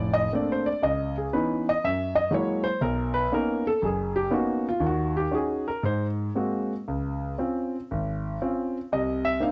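Swung eighths at 119 BPM in 4/4, played loosely with rubato, carry this brief, sophisticated solo jazz passage cut from a longer piece, where an intimate concert grand piano with deep bass and audible action noise sits up front in a dry, close 1970s-style studio with a small room reverb, moving through lush chords such as Bbmaj9, Gb9, Bmaj9 and Dbmaj7 before reaching Cm9 at 8.9 seconds.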